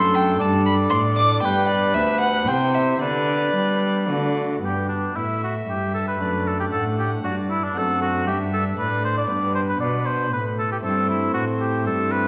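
Radiant and flowing, this excerpt from a baroque-style sonata movement with continuo moves in a straight 3/4 at 116 BPM in G major, tuned to A4 = 438 Hz. A violin carries the melody from B4 to D6, up front and close, with light vibrato, an airy bow and a period gut-string tone, while a warm oboe sings a second line beneath it from D4 to D5, also up front with light vibrato in a classical style. A pipe organ on a nasal cornet solo stop supplies the accompaniment with romantic voicing, and a rich, bowed cello gives the bass a reedy gut-string character. All four parts play throughout the 12.3 seconds, with the opening phrase returning at 4.6 s over harmonies that move from D/F# and G toward D7/F# and finally Am7/G. A wet recital hall reverb with a 1.5-second decay surrounds the ensemble.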